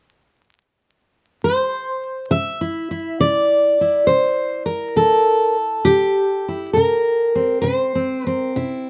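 The rhythm moves in a slow, straight 12/8 pulse, giving this acoustic country blues a relaxed, unhurried gait with a gritty, laid-back mood. A lone fingerpicked steel-string acoustic guitar carries the piece, entering at 1.4 s and playing through to the end at 8.9 s. Its dreadnought body gives a warm, full tone, and it sits up front in the mix, ranging from its low strings up into the higher register. The opening stretch has an unharmonized feel before the harmony settles onto a C7 at 2.3 s, where the second section begins. Light reverb and a layer of vinyl crackle lend the sound a worn, old-record character. The recording is cut from a longer piece.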